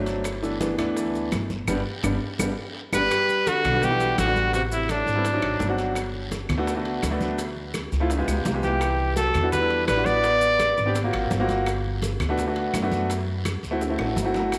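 A clear, intimate concert grand piano and a pizzicato upright bass with steel strings and a woody tone open this lively, sunny Afro-Cuban jazz excerpt in a straight four. Almost at once a bed of acoustic hand percussion settles in behind them: damped congas played with hard hands, tight high-tuned bongos heard faint and distant, ringing metal-shell timbales, raspy guiro, grainy maracas and claves. A drum fill and a band accent at 1.7 s set up the entrance of a punchy, forceful trumpet at 2.9 s, which plays up front with scooped notes and a light vibrato, while a soft-attacked tenor saxophone with vibrato and tape echo carries a lower second line in the background. Both horns drop out and return together at 8.6 s over richly extended harmony that shifts through tense altered chords between lush major-ninth resolutions. The polished piano stays present throughout, with audible action noise, deep bass and long sustain, and the whole band sits in a wet echo-chamber reverb.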